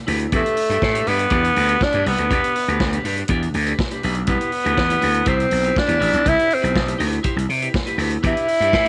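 Lightly reverberant, this celebratory, glamorous disco excerpt in C major moves at 121 BPM over Em7 and Cmaj7, with an overdriven, growly slap bass up front, a twangy, picked clean electric guitar, and a vintage acoustic drum kit of punchy kick, snare and hi-hat with a rolled-off top, while a raspy tenor saxophone enters at 0.4 s to carry the melody with light vibrato and scooped notes.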